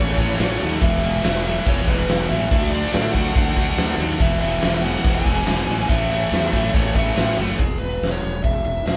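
A huge, up-front arena drum kit with a fat snare and punchy kick drives this energetic, swaggering hard rock excerpt from 0.2 seconds, riding a growly, fuzz-laden fingered bass that is bright and direct. Behind them, two picked high-gain guitars (one scooped) and a very quiet, double-tracked sludgy guitar play the riff, all stopping at 7.6 seconds. A dark, smooth overdriven lead guitar carries the melody across the whole clip, and the band sounds live in one room with light reverb.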